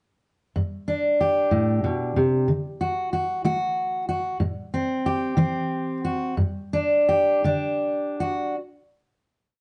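A close, lightly reverberant sound with a dark, rounded top end frames this short indie folk piece: a single fingerpicked steel-string jumbo acoustic guitar, full-bodied and up front, playing alone from 0.6 to 8.6 seconds. In a loping 6/8 at 62 BPM with an uneven, human sway, the fingerstyle part uses an alternating, palm-damped thumb beneath a G major progression through D and Am before settling on an open G5. The mood is anthemic yet warm, and the tempo slows from 4.4 seconds to the close.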